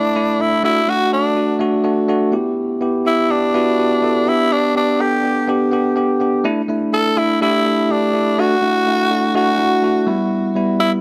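A straight 4/4 pulse at 124 BPM carries this nostalgic, glossy pop passage, a short section lifted from a longer piece and tuned slightly flat of standard to A4 = 439 Hz. A raspy tenor saxophone plays the solo melody up front from the very start to 10.9 s, its gritty, punchy pop tone shaded with vibrato and trailed by a delay as it moves between D4 and A4. Beneath it, a bell-like tine electric piano sounds clean through its built-in speakers and sits equally forward, supplying accompaniment between G3 and A4 for the full 11.0 seconds. The harmony circles from Asus4 to D, Em and G, then returns to Asus4, D and Em. A moderate plate reverb with a long 2.9-second tail gives the whole passage a polished, lingering sheen.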